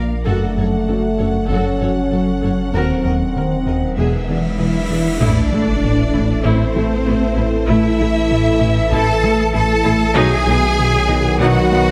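A roomy scoring-stage sound frames this vast, tense hybrid orchestral and electronic film cue at 97 BPM, where background violin sections carry the melody and a second line over vibrato-rich violas, close, lush cellos, a very quiet double bass section, a punchy sine sub bass and a smooth gliding sawtooth synth bass riff, all set against a glassy, warbling background FM pad with chorus. Distant dark French horns join from 0.3 s, a huge, bright cymbal swell and sub drop arrive at 4.2 s, and mellow trombone chords enter from 5.2 s as the harmony turns from F#m toward Am and B.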